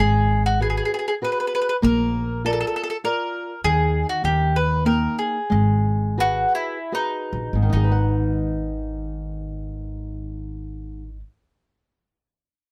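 A round, double-strung mandolin carries the melody up front in this short cut from an Italian folk serenade in G# minor. The mood is passionate and wistful, in a rubato 3/4 that moves between 72 and 101 BPM and slows from 3.6 to 7.7 seconds, with a second mandolin line entering at 6.2 seconds as the first falls away. A small, dark fingerpicked nylon-string guitar and a woody pizzicato upright bass support it, all captured close and dry with fine detail.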